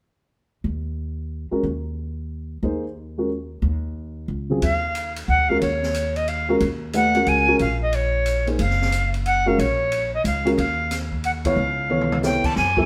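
Modal jazz in a swinging 3/4 at 181 BPM, cool and searching, this excerpt opens with a woody, thumpy pizzicato upright bass at 0.6 seconds, joined by a dark, mellow baby grand piano with audible action noise, moving from Eb7sus4 to Ebm11 as the section turns at 4.6 seconds. There the airy, reedy silver concert flute takes the melody with vibrato and tongued notes, while an open jazz kit with dark cymbals, a high-tuned snare and a boomy kick enters quietly behind it. A band accent at 11.4 seconds arrives just before a Db7alt chord, followed by a brief drum fill, all heard live in a moderate stone room.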